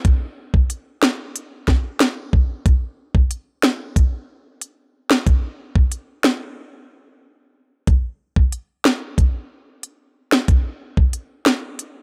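An electronic island pop drum kit opens this hypnotic, bouncy dancehall excerpt in a straight 4/4 feel, its knocking kick, sharp snare and smooth hi-hats sitting up front in a dry, gritty digital ambience, with a brief break from 6.6 to 7.9 seconds before the kit carries on to 11.9 seconds.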